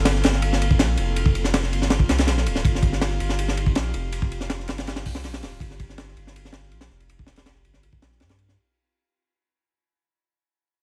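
Frenetic yet nostalgic, this drum and bass and jungle excerpt runs at 162 BPM in 4/4, moving from Gm11 to Eb69 in a dry mix dusted with vinyl crackle as it fades out. Up front, a crunchy, gritty breakbeat kit with a punchy kick, high-tuned snare and dark cymbals drives beside a thick, saturated sine sub bass. In the background, an airy, breathy pad with chorus and 12-bit sampler grit holds sustained chords under a filter sweep, while a calm, glassy texture of drifting overtones floats through its own chorus and built-in reverb.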